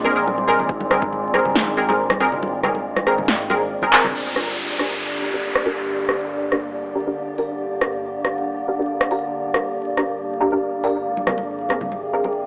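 A brooding, meditative deep dubstep excerpt at 139 BPM in a half-time feel opens on an Abadd9 chord. It layers muted, chorused dub chord stabs up front, a resonant sawtooth drone with moving overtones, an airy, wind-like noise layer, and a dark, rumbling detuned saw bass in the background, alongside bright, soft-handed congas with dub echo, a punchy deep house kit of snare, smooth hats, rim clicks and handclaps, and a quiet electronic kick. After a drum fill at 3.9 seconds the congas drop out and the harmony moves to G minor at 4.1 seconds, where an electronic downlifter sounds and filter sweeps run on the drums and the chord stabs; the congas return as the Abadd9 comes back, all set in a lush hall reverb with a gritty hardware grain, transformer saturation, vinyl crackle and an AM-radio tint.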